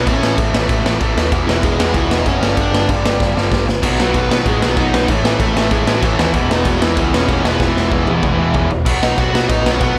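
A dry, raw-sounding cut from a longer rowdy, energetic punk rock track at 191 BPM in E major, driven by an up-front, boomy, gritty garage drum kit with a pumping stone-room sound and fills around 3.2 and 7.6 seconds, an up-front, bright overdriven guitar riff and a growly, punchy amped bass, while a dark, smooth lead guitar carries the melody in the background with tape echo, and a second compressed, distorted guitar riff joins underneath from 3.8 seconds.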